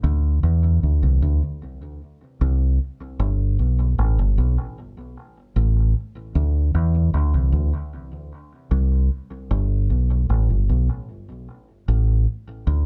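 A deep dub electric bass, played with the fingers, opens this short reggae clip and carries it alone from start to finish. The mood is sunny and laid-back, with a straight, unhurried feel. The bass sits low in its register, its tone dark and round, and it is amped and placed up front and direct in the mix. A tape echo trails its notes, while a moderate small-room reverb gives the sound a close sense of space. At 9.5 seconds the line moves into a new section, which carries on until the clip, cut from a longer piece, ends at 12.9 seconds.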